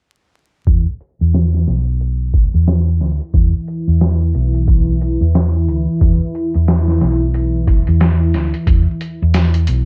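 A round, punchy hollow-body electric bass sits up front from 0.7 seconds in this dark, brooding trip hop piece cut from a longer work, alongside a gritty, compressed, pitched-down sampler-style drum kit with a thumpy kick, medium-tuned snare and hi-hat in a small room, all with a swung sixteenth-note feel. At 3.2 seconds a deep, detuned sawtooth pad with a sub octave enters above them, sustaining moody chords with a slow attack, chorus and its own reverb. The dark production carries vinyl crackle, a low-pass filter and a filter sweep running from 0.7 seconds to the end.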